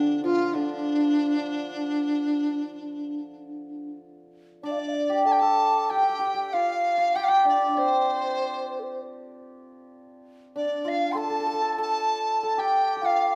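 A moderate recital-hall reverb surrounds this graceful, tender piece of Chinese traditional chamber music, cut from a longer work and moving with a free, rubato feel, with a new section arriving at 4.6 seconds. Up front, a large bamboo dizi carries the melody with an airy, buzzing-membrane tone, tongued notes and vibrato, though it sounds somewhat distant. Behind it, a close-miked low xiao adds a breathy, hollow second line with its own vibrato, while a hammered dulcimer, also up front, supplies a shimmering, ringing lower line.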